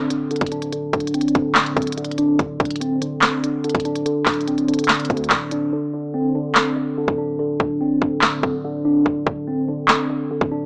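Brooding and hard-hitting, this short trap cut from a longer hip hop piece moves at 144 BPM in 4/4 with a half-time feel. A mellow, clean tine electric piano sits up front playing arpeggios over a Csus2/D chord, colored by a phaser and digital delay. Beneath it, a deep, boomy 808-style bass with a sine body, a noise layer and a fast, decaying attack rumbles in the background. The electronic drum kit hits hard and close, pairing a hard-clipped kick and sharp snare with handclaps and crisp hi-hats. At 5.7 seconds a brief break begins, lasting until 6.1 seconds, and the hi-hats drop out from that point for the rest of the clip, which ends at 10.7 seconds. Light reverb and a small-speaker quality shape the sound of the whole mix.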